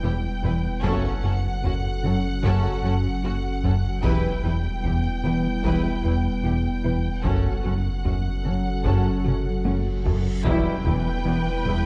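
This cinematic excerpt, a vast and relentless blend of orchestra and electronics in E dorian at 75 BPM, opens with lush bowed strings: a clear, intense, distant violin section carries the high melody over a softer violin second line in the background and rich, even violas. Beneath them sit a warbling, nostalgic lo-fi pad with chorus, a gentle tine-like synth pluck playing arpeggios, a smooth gliding synth bass riff, a deep sine sub bass, and very quiet cellos and a focused double bass section. Very quiet hard-stick taiko drums join at 0.4 seconds, and dark, roomy French horns and punchy trombones add sustained chords from 0.8 seconds, before a drum fill leads to a huge reverse cymbal at 10.2 seconds and an impact as the chords move between Em and F#m in a dark production with a faint mains hum.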